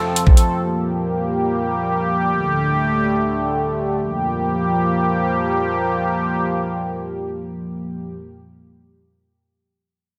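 Hip hop and trap in free time, dark and brooding, built on a sweeping, nasal sawtooth pad with chorus that holds sustained chords from 0.0 to 8.2 seconds, moving from F through Gm7 and Dsus4 back to Gm7. A trap drum kit with a knocking kick and metallic hi-hats sits up front for a brief burst at 0.2 seconds, stopping by 0.5. A lush hall reverb surrounds this short cut from a longer piece.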